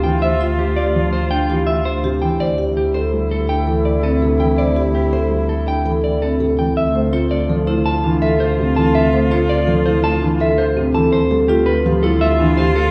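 Heard from further back in a wet recital hall, this hypnotic, meditative piece of classical minimalist pattern music moves in a straight 6/4 and is cut from a longer work. A clean, fingered electric guitar carries the melody while a clear, close-miked soprano saxophone, played in a classical style with vibrato and a soft attack, holds a second line; beneath them sit a dark, mellow baby grand piano's accompaniment and full, dry marimba arpeggios struck with medium mallets. A warm, bowed double bass plays up front on a smooth, even low D, as the harmony moves from G7sus4/D through C6/D to Dm7 when the second section arrives at 6.8 seconds.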